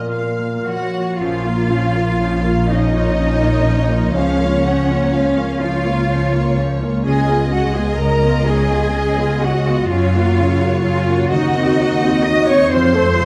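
This excerpt opens on a brief chord from a bright little flute group, a very quiet clarinet and a mellow bassoon, which fall away by 0.8 s. Beneath them, violas, cellos, a high, distant violin section and a ringing harp carry on. It is a slow, melancholic and elegiac orchestral movement in a compound six-eight metre, played with rubato so the beats stretch and give. The double basses enter at 1.2 s with a soft attack, joining the full-bodied cellos up front to anchor the bass, while the harp's fingerpicked arpeggios sit in the background. At 2.7 s a second violin section takes the melody, lush and rich in vibrato, as the upper violins float above with a clear, smooth tone. The chords pass through a diminished harmony before reaching a major chord at the close, heard in a dark, warm production with moderate stage reverb.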